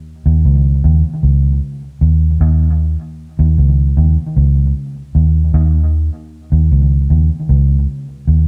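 Deep and hypnotic, this short reggae fragment, cut from a longer piece, moves at 77 BPM in a straight 4/4 feel. A vintage muted electric bass, played with the fingers, carries the music entirely on its own from 0.3 seconds to 8.5 seconds, keeping to a low register between Db2 and Eb2. Its tone is dark and round, with a foam-muted, amped character and a punchy attack that sits up front. An analog delay trails the bass, and a moderate spring reverb gives the whole fragment an echo-heavy atmosphere. The tuning rests at A4 = 442 Hz.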